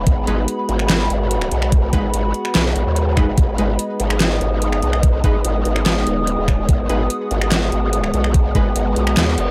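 Menacing and aggressive, this half-time heavy wobble dubstep cut places a saturated, growling bass with a formant-filtered wobble up front, alongside a knocking electronic kick and a layered kit of deep snare, metallic hi-hats, handclaps and finger snaps. A thick, detuned unison pad holds sustained chords under sidechain pumping, while a mellow, lo-fi tape-like pad drifts in the background and bold, punchy orchestra-hit-like stabs ring out with reverb and delay. The mix is dark and dry, and a faint reverse cymbal arrives at 9.4 seconds.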